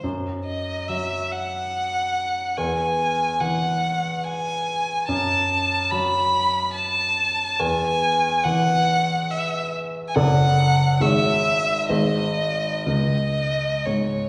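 Set in a resonant recital-hall reverb, this elegiac, melancholic romantic classical fragment in C# minor moves in a rubato 3/4 at about 70 BPM, with a brilliant, open grand piano accompanying from the start and a rich, expressive solo violin entering at 0.5 seconds to sing the melody up front with vibrato, soft bowed attacks and portamento, before the harmony turns through D/F#, C#m/G# and G# from 10.2 seconds and settles on C#5.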